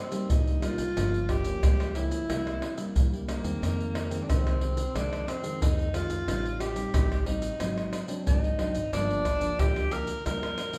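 A straight 4/4 groove at 90 BPM drives this sunny, lively cut from a longer samba and choro piece in C minor, with maracas, pandeiro, surdo and tamborim played up front by soft hands over a tight surdo in a live room. A breathy tenor saxophone takes the solo across the whole 10.8 seconds, its mellow subtone, soft attack, scooped notes and vibrato giving a whispered, intimate jazz-style voice that sits roomy and close at once. A nylon-string guitar supplies classical, thumb-plucked accompaniment, while a pizzicato upright bass with a woody tone on steel strings enters at 0.3 seconds. The harmony moves from Cm7 through Gm7b5, C7 and Fm7 to Am7b5, Ab7#11 and Gm7. The band plays live together in one room, bathed in a wet large-studio reverb.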